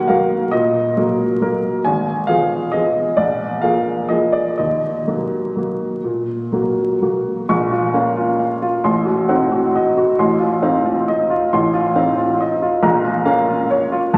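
Nostalgic and elegant, this short classical piano waltz moves in 3/4 with a rubato feel, its tempo drifting between 121 and 144 BPM. A solo upright piano plays throughout, from 0.0 to 14.2 seconds, ranging from F1 up to Db6 and sitting up front with a clear, woody tone that is slightly detuned and has a short sustain. The opening section rests in Eb minor, passing through Fdim/Ab and Bb7 before returning to Ebm, and at 7.5 seconds the music shifts to Bb minor, where Adim7 and F7/A lead back to Bbm. The tuning sits at A4 = 444 Hz. A wet concert hall reverb with a 2.2-second decay surrounds the piano, and a layer of vinyl crackle lends the recording an aged, sepia patina. The passage is cut from a longer piece.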